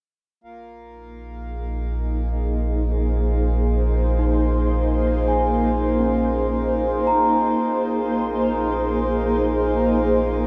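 Serene and spacious, this ambient passage opens at 0.4 seconds with a deep, round sub bass that fades out and a reedy, breathing pedal harmonium drone that fades in, joined at 1.6 seconds by a shimmering, ethereal pad of sustained chords with chorus, a granular texture and a filter sweep, and at 2.9 seconds by bell-like, delicate celesta arpeggios trailing tape echo, all set in a vast, echoing cathedral space.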